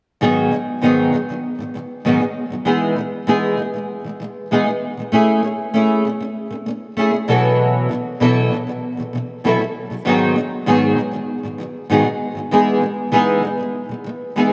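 Heartfelt and easy-going, this short pop excerpt rests entirely on a fingerpicked nylon-string guitar playing accompaniment from 0.2 to 14.5 seconds. The guitar has a warm, acoustic tone with fresh strings, and its small body sits up front in the mix. Double-tracking gives the part a fuller presence. A wet plate reverb with a long 3.2-second tail soaks the recording, giving it a dreamy atmosphere. Over a straight 4/4 feel, the harmony moves gently through G#m7, Emaj7, Amaj7 and B7sus4 before circling back to G#m7 and Emaj7.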